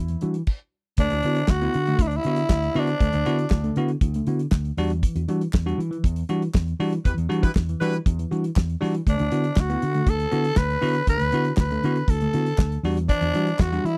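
This dry, close recording has the sound of a 1970s studio, with little reverb around a sultry, driving disco groove at 119 BPM in a straight 4/4. The damped drum kit sits up front with a fat snare, a tight kick and dark, rolled-off cymbals. Beneath it, a punchy fingered electric bass and a bell-like tine electric piano carry the harmony between Em7 and D6. A growling tenor saxophone with light vibrato leads the melody, falls silent after its opening phrase and returns at 9.1 seconds with its raspy edge. Crisp group handclaps sit in the background from 1.5 seconds, and after a brief stop by the band early on, a tight horn section adds a stab at 7.0 seconds as part of a band accent, in this excerpt cut from a longer piece.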